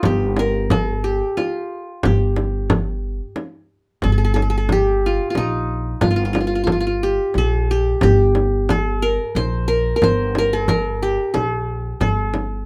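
A bright-edged, plectrum-plucked qanun leads this passionate, stately Arabic maqam ensemble excerpt at 90 BPM in 3/4, shifting from G maqam saba to G maqam bayati at 4.0 s, with a growly, woody pizzicato upright bass holding the low register up front and a small, close, dry frame drum struck with hard hands, all in a light reverb.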